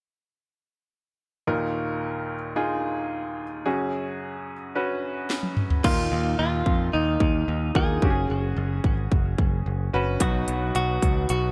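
A bright upright piano opens this piano-driven pop excerpt at 1.5 seconds, its woody, brilliant tone sitting up front as it moves between suspended chords in a dramatic, bittersweet mood. A drum fill at 5.3 seconds brings in the house kit, electronic and layered, with a punchy kick, cracking snare, crisp hats, crash cymbal and toms. From 5.8 seconds a clean electric guitar carries the melody, recorded direct with a scooped, compressed sound dressed in lush chorus and delay. Alongside it, a picked electric bass enters, bright and direct, holding the low end. The production has a bright 1980s-style digital sheen with light reverb and digital ambience, and the passage closes on a B chord before it is cut off.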